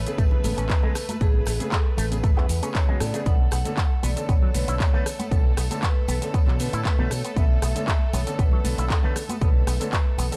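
In a dry, gritty studio sound, this sleek, groovy nu-disco excerpt at 117 BPM in B dorian moves from Amaj9 to Bm9 at 3.3 seconds over a punchy, up-front electronic kick, a pop drum kit with handclaps, rim click, shaker and metallic hi-hats, and background tambourine and congas, while a bright fingered electric bass with an envelope filter anchors the low end, a dark electric guitar riff with an envelope filter, lush chorus and vintage 12-bit sampler grit adds texture, a clear baby grand piano and a rich bowed string section supply sidechain-pumped chords, and an airy, ringing vibraphone played with medium mallets carries the melody through analog delay.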